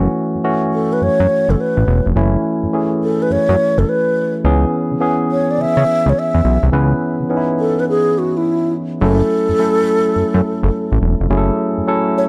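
A fat, detuned sawtooth bass with a filter pluck and fast attack drives this bouncy, confident new jack swing R&B cut alongside a clean, direct tine electric piano on minor seventh chords, and from 0.7 seconds an airy alto flute carries the melody with mellow vibrato, a soft attack and a slightly unsteady tone, over a swung sixteenth-note feel in a dark, warm production with light small-room reverb.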